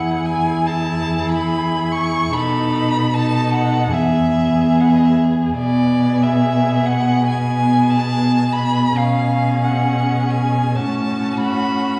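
Yearning and elegiac, this slow romantic movement for string quartet drifts at 66-75 BPM in a rubato 4/4, its first violin singing the expressive melody with a soft attack, vibrato and portamento above a dark, distant second violin, a warm viola's accompaniment and a smooth, even cello bass sitting up front, the quartet heard from further back in a reverberant recital hall as the chords move from E through B7 to F#m/A.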